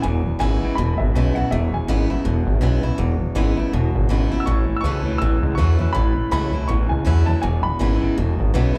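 Rockabilly cut from a longer piece, rollicking and rowdy at a swung 162 BPM in E major and heard as a live gig through the venue's PA with club reverb, where a gritty, distorted synth bass sits up front, a boxy picked steel-string acoustic guitar with fresh strings, finger squeak and slapback echo provides the accompaniment, an electric guitar through a small old amp plays a twangy, lo-fi riff, and a woody, slightly detuned upright piano carries the melody with slapback and tape echo, dropping out between 2.1 and 4.4 seconds, as the chords move from E to A and back to E.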